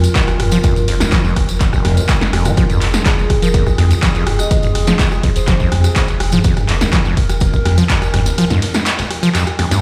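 Heard as if played over a big sound system in a bare stone room, this driving, hypnotic acid house cut is otherwise fairly dry, with the kick and drum machine sitting up front. A punchy, overdriven analog drum machine supplies handclaps, hi-hat, ride, rim click, snare and toms, with a short room on its snare, clap and hats. An electronic kick with a tape-softened punch joins at 0.2 s and drops out at 8.0 s, while a gritty, compressed breakbeat sampler kit sits very quietly beneath it and a jingly acoustic tambourine stays close but in the background. At the low end, a round, mellow sine sub bass pumps against the kick, and a squelchy, resonant sawtooth acid riff with a filter sweep, tube saturation and tape echo churns over a steady F minor chord. Above them, a warbling, nostalgic, lo-fi pad holds detuned chords with chorus and a long release, and a ringing, airy vibraphone with slow motor vibrato and tape echo briefly surfaces between 3.1 and 6.0 s.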